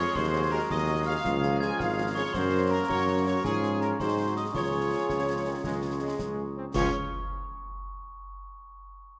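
A rousing, festive military-style march for wind band in 6/8 and Db major at 109 BPM, this short cut from a longer piece sets a dark, distant trumpet section on the melody over an up-front, mellow tuba bass and roomy French horns in the background. A ringing, bell-like glockenspiel played with soft plastic mallets, an airy tongued flute group and a very quiet woodwind section carry second lines, while bright trombones hold sustained chords. Snare, bass drum and dark clash cymbals enter at 0.2 seconds with a close, dry sound, all set in a moderate scoring-stage reverb as the chords move from Ab7 through Gb and back home to Db.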